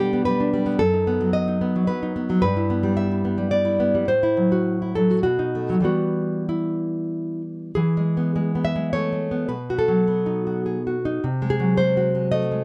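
Melancholic and wistful, this short cut from a longer romantic piece for solo classical guitar moves in a rubato 3/4 at 92-111 BPM, its fingerpicked nylon-string guitar sounding full-bodied and up front with audible finger squeak, caught by close, detailed microphones in light reverb as it passes through E minor before turning to E major at 7.8 s and ending on G#7/B# at 11.2 s.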